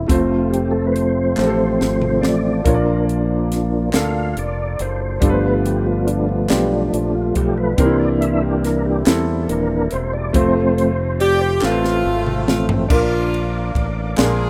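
A slow gospel groove in 6/8 at 47 BPM opens in Bb major with a tonewheel organ solo out front, its clean tone colored by chorus vibrato and a slow rotary speaker, carrying the music until 12.9 seconds. Beneath it, a clear concert grand piano with a worn character and deep bass plays accompaniment, a bright, punchy fingered electric bass holds the low end, and a very quiet, mellow French horn section sustains chords until 12.9 seconds. A crisp fusion drum kit with dark cymbals, a high-tuned snare and a punchy kick sits up front, adding fills at 1.4 and 11.6 seconds, while group handclaps from a live room join in the background at 1.4 seconds. The harmony moves through F, Bb, G7 and C7 before settling back to F and then Bb. An edgy, close-miked saxophone section enters at 11.2 seconds with a tight, vibrato-laced melody, shortly before the piece shifts into a new section at 12.9 seconds. The mood is uplifting and reverent, captured in a rough home demo mix with little reverb, and the clip is cut from a longer piece.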